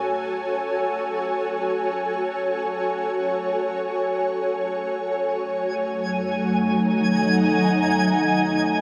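Luminous and peaceful, this free-time ambient fragment from a longer piece opens with an ethereal, airy pad holding sustained chords that move from F#m to D#m7/F#, its detuned, mellow tone shimmering with ensemble chorus and tremolo, before a twinkling granular texture sparkles up front on G#5 at 5.7 seconds and a resonant drone with moving overtones enters on A3 just after, all bathed in a huge, wet reverb.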